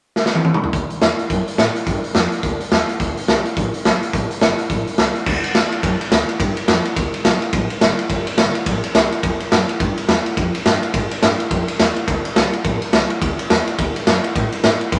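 A raw, saturated sound in a bright stone room with light reverb carries this rowdy, rollicking rockabilly excerpt, which moves at a brisk 212 BPM in 4/4 with a swung eighth-note feel in D mixolydian. A drum fill on the garage kit opens the clip at 0.2 seconds, and the kit stays up front with a punchy kick, a medium-tuned snare, hi-hat, ride, crash and toms, its gritty, warm tone pumping with the room and rolled off at the top. The upright bass joins at 0.7 seconds, played pizzicato on gut strings, woody, dark and thumpy, sitting in the background between F#1 and A2. After the opening stretch, a second section begins at 5.3 seconds and runs until the cut at 15.0 seconds.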